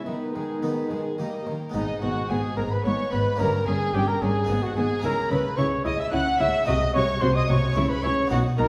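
A dark solo trumpet with light vibrato and a smooth top leads this dramatic, driving fragment of a baroque-style concerto movement in G# minor, moving at 110 BPM in a straight 3/4 and tuned to A4 = 439 Hz. A period-style violin section with gut-string tone also carries the melody higher up, while a second, close and reedy violin section plays a line beneath it. A viola section sits in the background, filling out the accompaniment alongside a round, single-strung harpsichord in Italian style. A nasal cello section holds down the bass from the start, and a rich double bass section joins at 1.7 s as the music moves into its second section. The harmony travels from G# minor through D#7 and C# minor to G#7 before settling again on C# minor. A wet recital hall reverb sets the ensemble further back in the room, lending the 8.7-second cut a spacious concert feel.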